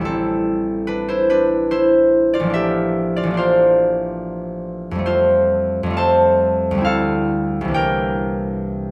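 Closely miked with light reverb, this short excerpt of a serene, graceful classical solo for concert harp flows at a rubato 62-74 BPM in 3/4, its bright, ringing, fingerpicked tone sitting up front across a range from A1 to A5 as chords move from Am7 through Fadd9 and Dm11 to C13 by 7.7 seconds.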